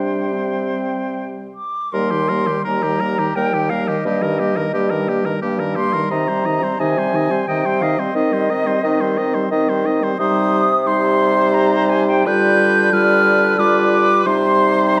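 This classical excerpt is a slow, romantic movement for wind quintet in 3/4 at 88 BPM, with an elegiac, melancholic mood and an unhurried rubato that makes the beats feel uneven. The airy concert flute carries the melody high above the ensemble, its soft attack, vibrato and rolled-off highs giving the line a gentle, breath-like quality. Beneath it, a clear oboe sings a second line with vibrato. The French horn, also with vibrato, and a mellow, smooth-topped clarinet fill in the accompaniment. A warm, vintage-toned bassoon with light vibrato anchors the bass. The harmony opens in Eb major and settles into C minor from 10.2 seconds, passing through a G7 over D at 12.3 seconds, all set in a moderate recital-hall reverb.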